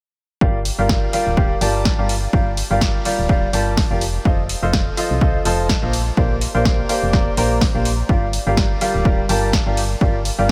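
This soulful, energetic piano house excerpt opens at 0.4 s with a clear grand piano riff, a round FM bass and an electronic kick arriving together at 125 BPM in 4/4, carrying a light 16th-note swing in G minor. The piano sits up front, ranging from F3 to Bb5, dressed in lush chorus and delay with a sidechain pumping effect. Beneath it, the dark, fast-attack FM bass stays low between D1 and C2 and pumps with sidechain as well. At 0.7 s an analog drum machine adds hi-hat and snare, and both its snare and the kick have a punchy, tape-warm character. The harmony moves from Gm7 to F7 and Bb69 before returning to Gm7, while a light reverb lends a modest sense of space until the cut at 10.5 s.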